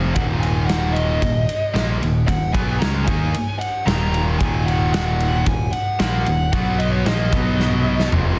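Hard rock with a driving, aggressive mood, this short cut from a longer piece pairs a tight distorted guitar with a scooped, high-gain guitar sitting in the background, both playing picked riffs over a growling, overdriven electric bass placed up front. A dark, smooth lead guitar carries the melody high above, its overdriven tone trailed by plate reverb and tape echo, while a big acoustic rock kit with a punchy kick, medium-tuned snare, ride, toms and bright cymbals fills a roomy space. A drum fill closes the passage from 7.6 seconds, and the dense, heavily limited master keeps the sound thick and forceful.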